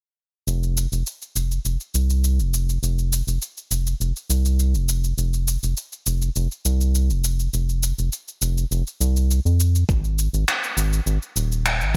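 Meditative and warm, this organic downtempo excerpt moves at 102 BPM in F minor, built on a round, deep analog synth bass that evolves under a filter sweep, its mellow, wave-folded tone sustained low in the register from 0.5 s. Tape-tinged electronic shaker and finger snaps sit up front, bathed in gated reverb, while a gritty, thumpy sampler-style kick drum arrives at 9.9 s. The production is bright and dry in a 1980s digital manner, cut from a longer piece.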